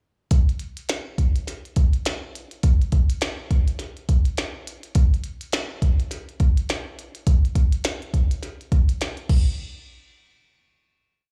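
A glitchy electronic drum kit carries this hazy, dreamy indie pop piece on its own, with a soft kick, a tiny snare, clicky hi-hats and a crash cymbal set up front over a relaxed, dry backbeat in a lightly swung 4/4. Though the kit itself is dry, it sounds like a live gig heard through the venue's PA with a touch of club reverb. The verse groove runs from 0.3 s to about 9.5 s before a final hit, from 9.6 s to 11.3 s, closes the piece.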